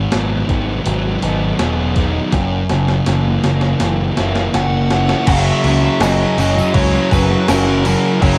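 Lightly reverberant and hazy from its home cassette recording, this wistful, dreamy shoegaze and dream pop fragment opens on a thick fuzz guitar riff and a growling, overdriven picked bass up front, with a crunchy overdriven guitar bathed in reverse reverb sitting in the background. A crisp 8-bit drum machine with a thumpy kick and a medium-tuned snare plays a fill as the chords move from G#m7 to F#7. A compressed fuzz lead guitar with analog delay carries the melody from 4.5 seconds, and at 5.3 seconds the crunchy guitar gives way to a biting, double-tracked overdriven riff, joined by a very quiet, mellow string-machine cello pad and a jingly tambourine.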